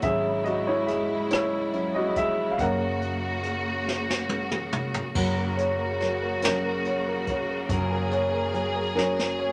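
Melancholic and dramatic, this six-eight pop ballad moves slowly at 47 BPM in dotted quarters, taken from a longer piece. A dark, mellow baby grand piano sits up front and carries a solo through the first 5.2 seconds. Beneath it, a rich bowed string section holds smooth sustained chords with vibrato, a round, punchy hollow-body electric bass is played with a pick, and a brushed jazz kit adds dark cymbals, a high-tuned snare and a boomy kick, while the harmony shifts from E6/G# to F# at 2.6 seconds. At 5.2 seconds a full-bodied fingerpicked steel-string acoustic guitar joins with arpeggios as the music moves into a new section. Drum fills close each section, the piano adds a fill of its own in the final moments, and the band sits in a moderate studio reverb.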